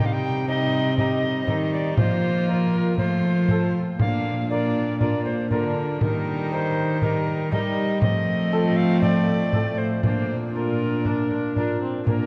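A rich, close gut-string cello anchors the bass of this stately, festive Renaissance-style consort dance in Bb major at 119 BPM in straight 4/4, cut from a longer piece and set in a wet cathedral reverb with a dark, warm production. Above it, an airy wooden alto recorder with vibrato and a soft, chiffy attack carries the melody, while a bowed period-style violin plays a second line in the background, and a reedy viola and a delicate fingerpicked lute with double gut strings fill in the accompaniment. A small, bright frame drum, played with hard hands, joins at 1.0 s.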